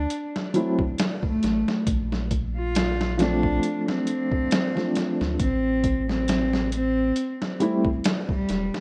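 Trip hop at 68 BPM in A phrygian, brooding and melancholic, this short excerpt from a longer piece sets a dark, reedy bowed cello melody with tape echo over a round sine sub bass and a pitched-down, muffled sampler-style drum kit with a thumpy kick, overdriven and re-recorded in a small room. A felt-muted upright piano with tremolo and audible action noise enters at 0.5 s with intimate accompaniment, moving from a rootless D7 through Bbmaj7 to Am at 5.4 s. The rough home demo mix carries light reverb, with cello, drums and piano sitting up front over a lightly swung 16th-note feel.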